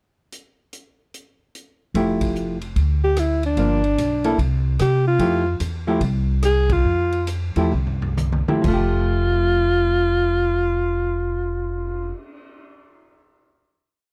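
A short, complete small-group swing and bop piece with a relaxed, swinging mood, built on a swung 4/4 feel that slows down from 5.2 to 8.7 seconds before settling on a final chord. A big-band drum kit opens with a pickup bar at 0.3 seconds, its sticks keeping a ride cymbal pattern over a boomy kick, with crash, hi-hat, rim clicks, toms and a cymbal swell sounding natural in a big room, sitting lower than the other parts. The upright bass enters at 1.9 seconds, pizzicato on gut strings, woody and thumpy, playing a two-feel line up front. A vintage hollow-body electric guitar follows almost at once with clean, picked, syncopated comping in three- and four-note chord shapes, its tone dark. At 3.0 seconds a clear alto saxophone takes the melody, close-miked with vibrato, stating a bebop-style theme that returns, while a band accent lands at 6.6 seconds and a drum fill from 7.7 seconds leads into the closing chord. 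The whole has the dry, close sound of a 1970s-style studio with a small room reverb.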